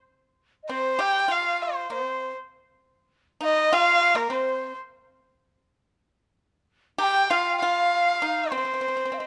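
This is a graceful, tender piece of Chinese traditional music in C yu mode, moving in a rubato 4/4 around 100 BPM, cut from a longer work. A single bowed erhu carries the melody up front between Bb4 and G5, its nasal, earthy and slightly boxy voice shaded with light vibrato, portamento and an airy bow. An end-blown bamboo xiao enters at 0.6 seconds as a second line in the background, holding a straight tone with a crisp attack and rolled-off highs while ranging from Bb4 to Bb5. From 0.7 seconds the pipa adds a lower second line between Bb3 and G4, its dry, percussive sound played with fingerpicks. The three instruments continue to 9.3 seconds, captured by close, detailed microphones in a light reverb.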